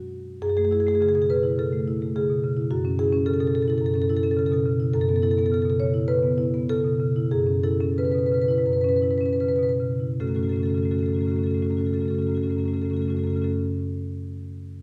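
A solo marimba played with medium mallets opens this contemporary classical excerpt, its tone warm and placed up front. The mood is reflective and flowing, with a free, rubato feel that lets the phrases breathe. From 3.8 seconds the pace gradually slows, settling as the first passage closes at 10.2 seconds. A short new section then begins on a plain minor chord, following the richer harmony heard at the start. A wet recital-hall reverb surrounds the instrument, giving it the resonant space of a church or concert hall.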